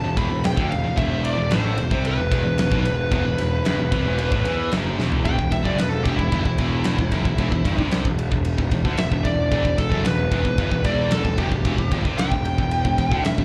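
In a straight 4/4 pulse, this epic, heavy metal excerpt sounds like a live club gig heard through the venue's PA, with a growly, fuzz-laden picked bass and a big, dark drum kit with a fat snare and punchy kick up front from 0.2 s, two bright, picked, distorted rhythm guitars (one scooped) playing a low riff in the background with slapback echo, and a high-gain lead guitar carrying the melody with slapback and tape echo until a drum fill at 5.0 s launches its solo at 5.3 s.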